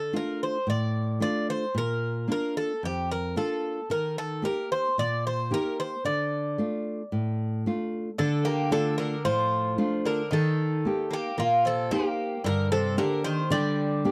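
A picked, metallic bouzouki carries a bittersweet, moody melody in D phrygian over full-bodied, fingerpicked nylon-string guitar at 112 BPM in straight 4/4, both up front in a dry, close 1970s-style studio sound with light reverb, and a second double-strung bouzouki line enters lower at 8.2 s as the chords move through Dm, Bb, Eb and Gm in this Greek folk excerpt.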